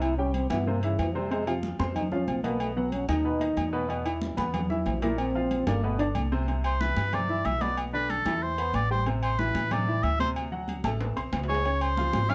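Afro-Cuban jazz at a brisk 186 BPM with a sophisticated, sunny mood, cut from a longer piece, in which a dark, veiled bucket-muted trombone solos with vibrato over an intimate baby grand piano with audible action noise, a woody pizzicato upright bass up front, ringing, saturated agogo bells and timbales, and bright, high-tuned congas set back in a large room, until a clear oboe with light vibrato takes the melody at 6.7 seconds, settling into C major over rich chords like Cmaj9 and D7#11 before a drum fill at 11.0 seconds, all captured close and detailed with light reverb.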